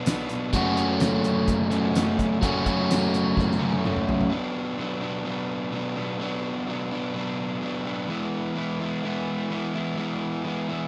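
Indie rock at 127 BPM in 4/4 with an upbeat, jangly mood, cut from a longer piece and heard as a rough home demo with light studio reverb. A bright, crunchy overdriven guitar drives the riff across the whole 10.9 seconds, joined at 0.5 s by a second up-front overdriven electric guitar carrying subtle chorus and digital delay, while a dark, boxy grand piano holds the bass in the background and a cloth-damped, thuddy drum kit with a fat snare, tight kick, tambourine and a rolled-off top adds hi-hat, snare and toms. The drums close with a fill from 3.4 s, and at 4.3 s the piano, drums and second guitar stop, leaving the crunchy guitar alone as the chords move from Bm to E.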